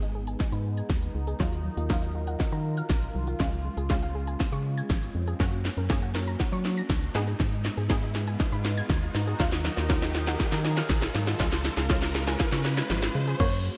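This bright, 1980s-style digital production sits in light reverb. It carries an energetic, confident dance-pop build-up at 120 BPM, tuned slightly flat, in a clip cut from a longer piece. Up front, a punchy house drum kit with cracking snare, crisp hats, shaker and crash cymbal plays a fill through gated reverb over a hollow, organ-like FM bass. A lush detuned unison pluck, an evolving sweeping resonant pad and a soft, round arpeggiated pluck with digital delay all pump against the kick under a filter sweep. An electronic riser joins at 4.3 s, and a brief warbling pluck melody note lands at 13.4 s.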